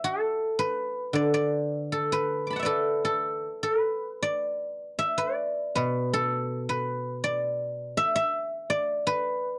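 Chinese traditional music for solo plucked strings, this short excerpt cut from a longer piece carries a serene, pastoral mood in a free, rubato 4/4 feel. A single guzheng plays alone for the full 9.6 seconds, its fingerpicked tone silvery and ringing as it ranges from the low B2 up to D6. The instrument sits up front in the mix, close and present. The sound is dry with little reverb, and the recording has a gritty, hardware character, colored by transformer saturation and the texture of cassette tape. The result feels both calm and slightly weathered, like a quiet moment preserved on old tape.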